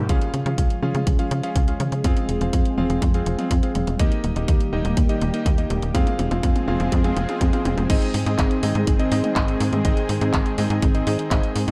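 A straight 4/4 pulse at 123 BPM drives this playful, romantic italo disco excerpt in Ab major. A punchy, layered electronic kick sits up front, while a house drum kit with bright hats, handclaps, crash cymbal and toms adds studio reverb and a drum fill running from 0.1 to 7.9 seconds. Underneath, a tight sequencer bass pushes forward with a nasal, sawtooth-and-square tone and a quick, decaying filter pluck that keeps evolving. A vintage electric grand piano with a clangy low end punctuates the harmony with stabs through tape echo, and a thick, detuned unison pad with chorus and a slow attack holds sustained chords in the background, while a filter sweep on an analog synth pad runs up to 7.9 seconds. The chords move through Db, Fm, Eb and Fm before landing on Ab as a new section opens at 7.9 seconds, all set in a dark, warm production with light digital ambience.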